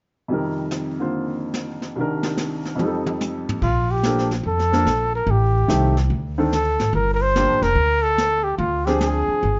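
Relaxed and playful, this short slice of small-group swing and bop moves at 144 BPM in 4/4 with a lilting swung feel, set in Bb major. A clear baby grand piano opens at 0.3 seconds alongside a brushed jazz kit, whose dark cymbals, medium-tuned snare and punchy kick sit in a small, smooth-sounding room, with a drum fill leading into the next passage at 2.8 seconds. At 3.6 seconds a breathy, mellow trumpet steps up front with vibrato and scooped notes, close-miked and soloing in a jazz style, while a woody pizzicato upright bass joins beneath it. The harmony drifts from an F7sus4 through Cm7 and F7 before settling onto Bbmaj7 and winding through Am7b5, Gm7 and Dm7b5. Light reverb and a softened top end give the whole a cozy, intimate sound, and the excerpt is cut from a longer performance.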